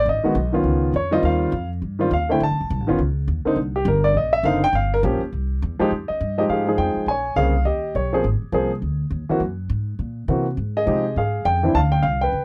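A dry, close recording with light reverb and a 1970s studio feel frames this cool, moody swinging jazz fragment at 205 BPM, where an up-front, warm baby grand piano with natural, short-sustained tone carries the melody over the woody, thumpy pizzicato of a steel-strung upright bass, both playing throughout the 12.4 seconds as the harmony moves through rich chords like Db9, Cm9 and Gm7b5 before a second section opening on Fm9 and Bbm9.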